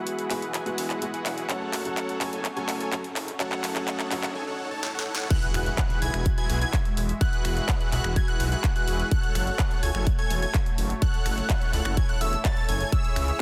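Festival progressive house with an uplifting, euphoric lift, this excerpt opens on a build-up where a soft, felt-muted upright piano with audible action noise plays accompaniment until 4.2 seconds, alongside a lush background pad, a huge, airy supersaw riff, a detuned saw bass, a very quiet riser and a big-room dance kit of snaps, claps, hats, crash and a punchy snare rolling through drum fills. At 5.3 seconds the drop lands with an impact, a punchy, up-front electronic kick and a bright, catchy plucky unison lead playing arpeggios, while sidechain pumping breathes through the piano, pad, supersaw, bass and lead. Moving between Eadd9 and F#m, it sits in light digital ambience with a dense, heavily limited modern master.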